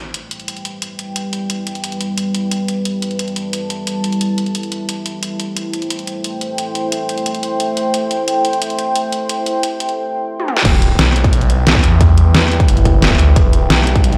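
Played through a big sound system in a bare room and caught in a large studio reverb, this cut from a longer dark technical drum and bass piece sounds cavernous, futuristic and shadowy. A deep, moody ambient pad holds sustained chords from the start, its sawtooth and sub-octave layers wave-folded and ring-modulated, with slow attacks, long releases, chorus and a pumping sidechain feel. Alongside it, a layered dubstep kit of crash, hi-hat, toms and a deep, up-front snare builds tension, every piece filtered thin at the low end. After a drum fill at 10.4 seconds, the drop lands at 10.7 seconds, where a punchy electronic kick joins in. A thick, swirling detuned saw bass enters at the same point, saturated with overdrive and a phaser, and sits loudest in the mix as the harmony returns from Am7 to Em.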